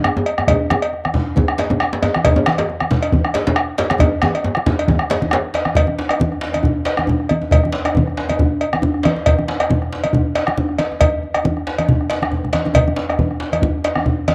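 Captured at home on cassette, this short cut from a longer West African traditional drum ensemble piece carries light reverb and the ambience of a small room. The mood is powerful and festive, in a swung 4/4 groove. A round, vintage, band-limited bombo sits up front, joined by a metallic cowbell and bright, thin-skinned congas played with soft hands, close and dry. Two djembes fill out the ensemble: one medium-tuned and struck with hard hands, heard distant in a large-room space, drops out at 5.4 seconds, while the other is deep, compressed and saturated, played with soft hands and carrying through to the end. A drum fill from 4.0 seconds leads from the opening section into the second, and a brief fill returns at 12.3 seconds before the cut ends.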